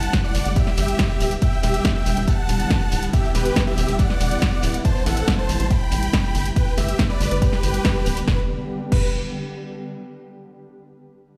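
Heard through a big sound system in a bare stone room, this euphoric, emotional uplifting trance drop at 140 BPM in E minor sets a huge, detuned supersaw lead with delay and sidechain pumping over a shimmering, ethereal pad that holds sustained chords until 8.5 seconds, a tight, dark sequencer bass, a techno kit with punchy snare, crash, hi-hat and ride, an up-front, heavy electronic kick from 0.1 seconds, and a very quiet, grainy shekere, all moving through G, Em7 and Am7.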